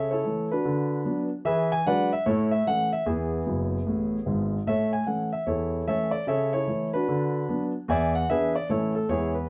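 A lone concert grand piano opens at once, playing swinging, exuberant stride jazz in a lively 4/4 with a gentle swing on the eighth notes. The piano sits up front with a deep bass and long sustain, and its warm tone spans from low F#1 up to G#5 across this short clip cut from a longer piece. The harmony moves through chords such as A/C#, Bm/D and E9 before settling on A, then circles back through the same rising bass motion toward E7 and A near the close. A brief fill stands out between 3.5 and 4.7 seconds, bridging the phrase before the progression begins again. A moderate studio reverb gives the instrument a short, natural room tail, and the clip ends at 9.5 seconds on an E chord, as if mid-phrase.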